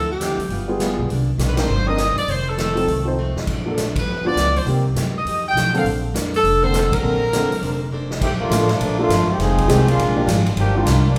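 A fast swinging 4/4 at 203 BPM drives this brassy big band jazz excerpt in Bb major, cut from a longer piece. Upright bass, a picked plugged-in steel-string acoustic guitar and a sax section playing the melody start together, with the drum kit entering at 0.2 s and grand piano just after. The saxophone section sings up front with vibrato, while the woody, growly pizzicato bass anchors the low end and the guitar sits in the background with audible finger squeak. The big-room kit, with its punchy kick, medium-tuned snare, ride, hi-hat and crash, adds fills at 3.2 and 7.9 s, and the band hits accents through the opening stretch. At 8.2 s the saxes give way to a bright, soft-attacked trombone section that takes a present solo over a turn toward Fm7, Bb7 and Ebmaj9. The whole band plays live in one room, wrapped in a lush large-studio reverb.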